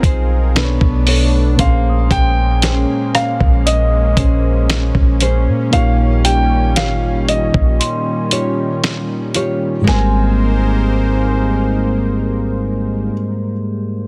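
Dreamy and romantic, this contemporary R&B excerpt in Ab major drifts at 58 BPM, with a dark, intimate grand piano carrying the melody through digital delay over round, warbling electric-piano-like synth keys, a smooth sawtooth analog pad, fingerpicked nylon-string guitar arpeggios, a deep, boomy 808-style bass and a gritty, tape-warm sampler drum kit with a thumpy kick and fat snare, while a delicate, bell-like celesta enters in the background at 1.6 seconds, the drums drop out at 10.1 seconds, and the chords settle onto Abmaj9 at 9.9 seconds in a small room under a dense, heavily limited master.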